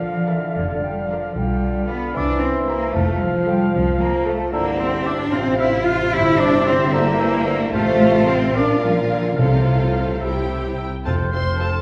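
Graceful and lively, this brief passage from a longer classical-period movement for symphony orchestra moves in a quick, lilting 6/8. The rich, vibrato-laden cello section sits up front and carries the greatest weight, joined by the smooth, even double bass section in the low register, while the mellow bassoon adds its own soft accompaniment beneath. The violin section's focused melody rides high but in the background, entering at 0.3 seconds together with a very quiet second violin line and a viola part with a smooth top. A pure, expressive concert flute, a distant and roomy oboe, and a present but very quiet clarinet weave their second lines through the texture, as a mellow French horn section holds sustained chords behind them. Timpani struck with medium mallets sound briefly near 2.9 seconds and return from 9.4 seconds, landing on the closing cadence. A wet recital hall reverb places the whole ensemble further back in the room, giving the bowed strings a soft, blended glow.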